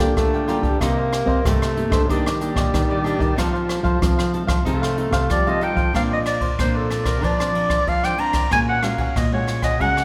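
A straight 4/4 samba-choro groove at 93 BPM in Bb major rolls along on an airy brush kit with dark cymbals, a boomy kick, hi-hat and rim clicks, while a crisp picked cavaquinho and a full-bodied, fingerpicked nylon-string guitar play chords in the background over a dark, thumb-plucked nylon-string bass line with audible finger squeak. From 0.2 seconds a breathy, whispered tenor saxophone carries an intimate second line with soft attacks, vibrato and scooped notes, and it gives way around 5.9 seconds to a close-miked, up-front clarinet melody, warm and subtoned, that enters at 5.3 seconds. The playful, joyful excerpt sits in a moderate recital-hall reverb, moving from Gm7/D through Cm7, Ebmaj7 and F7 to Bbadd9 and Gbadd9/Bb.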